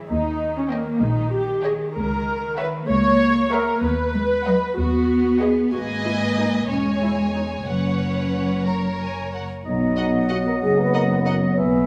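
Bowed strings open this short, whimsical film cue, with a close, even cello section sounding from the very start, joined at once by a woody, up-front viola section and a deep double bass section beneath. From 0.7 seconds two violin sections take the top: one carries a smooth, lush melody with vibrato, while a richer, more expressive violin line moves below it, giving the lilting six-eight a mischievous, magical air. The harmony wanders through colorful chords and moves through a suspended chord before settling into a new section. At 9.6 seconds woodwinds and brass arrive: distant, roomy French horns hold chords, a mellow tuba anchors the bass, and an airy, hollow flute sits in the background. A moment later an oboe adds a classical-style line while a soft-attacked clarinet and a bassoon join in the background. A moderate scoring-stage reverb gives the ensemble space before the fragment cuts off.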